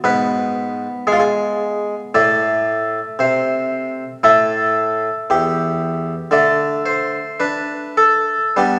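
Moving in a free, rubato 4/4 at a slow 50-60 BPM, this short piece cut from a longer baroque-style suite movement has a serene, flowing mood. A single French-style harpsichord plays solo throughout, its plucked, round tone sitting up front and mid-forward on one set of strings, ranging from E2 to D5 across chords that shift from Abm to Am, then A5 and D5 by 6.3 seconds. A wet recital hall reverb with a 1.6-second decay surrounds the instrument with a spacious glow.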